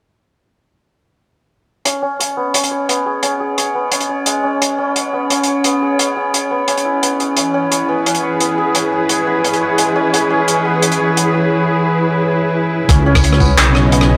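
Spacious and tense, this half-time drum and bass excerpt at 174 BPM in C# minor pairs bright, shimmering santur arpeggios under a filter sweep with an eerie, nasal FM drone and a crunchy, saturated breakbeat kit of handclaps, hi-hat, rim click and tambourine, adds a veiled con sordino cello section with sidechain pumping at 7.4 seconds, then drops at 12.9 seconds into a deep wobbling sawtooth bass and a gritty, pitched-down electronic kick, inside a dreamy mix soaked in church reverb.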